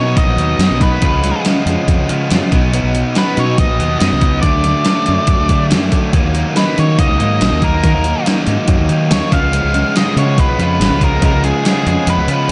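Wistful yet upbeat, this short indie rock excerpt moves in a straight 4/4 over a chord sequence that drifts from Bmaj7 and C#7 through B, D and D#m before returning to C#7. A dark, fuzzed-out lead guitar carries the melody through distortion and analog delay, while two rhythm guitars play riffs beneath it: one crunchy and bright, the other sludgy and overdriven with a subtle chorus shimmer. A growly fingered bass, fuzzed and overdriven, anchors the low end as the loudest of the string parts. From 0.2 seconds a gated 80s digital drum machine sits up front, its thumpy kick and gated-reverb snare roughened by overdrive and re-recorded in a small room. The overall production is dusky and rounded in a digital ambience, and the kick and snare drop out at 12.1 seconds just before the cut.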